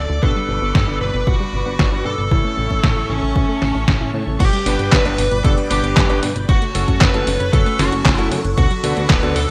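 A dark, overdriven lead guitar carries the melody through this danceable, playful italo disco excerpt, with digital delay trailing its picked lines. A punchy, tape-warm electronic kick enters at 0.2 seconds and a detuned 8-bit drum machine follows at 0.7 seconds, its up-front snare, handclaps, hi-hat and crash set in gated reverb, while a glossy chorused synth bass grounds the groove. Further back sit a swirling phased string machine, a soft round pluck playing arpeggios and the clangy stabs of an electric grand piano, all framed by bright 1980s-style digital production as the chords move from G through A, F#m and D6.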